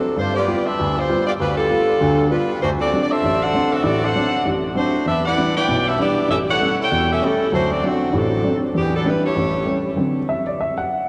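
A saxophone section and a baby grand piano open together in this brassy, swinging jazz excerpt at 196 BPM in 4/4, with a 60% swing on the eighth notes and a D mixolydian color. The saxophones carry the melody as an ensemble up front, their tone rounded by vibrato and a soft attack, ranging from D3 to G5. The piano sits alongside in accompaniment, intimate and natural with a short sustain, the faint sound of its action audible, and a lush chorus giving it a shimmering edge. The harmony moves through G7, D7, Em7 and A7 in a brisk cycle, all of it bathed in a cathedral-sized reverb that lends the mix a dreamy, floating quality. The saxophones drop out at 9.8 seconds, and from 10.0 seconds the piano plays alone over a D7 chord until the excerpt is cut off.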